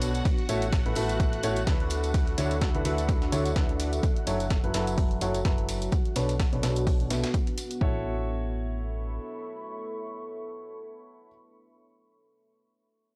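A clear, vintage concert grand piano leads this euphoric piano house excerpt up front with a smooth riff and deep bass, shaded by a low-pass filter sweep, analog delay and sidechain pumping. Around it sit a moody sawtooth pad with a detuned, warbling sub-octave depth, shimmering string-machine violins holding bright chords in the background under their own filter sweep, and a round, punchy FM bass with a fast, decaying attack. A punchy, tape-warm analog kick joins at 0.3 seconds, driving a lightly swung groove with an electronic hi-hat, a gritty, compressed breakbeat kit with a high-tuned snare, and a close tambourine tucked behind. The chords glide through lush sixth, ninth and minor seventh shapes, giving the passage an uplifting lift. At 7.8 seconds the drums, strings and tambourine fall away, leaving the piano, the bass until 9.2 seconds and the pad's long, reverb-tinged tail. The whole mix sounds dry and hardware-driven, with transformer saturation and cassette tape character.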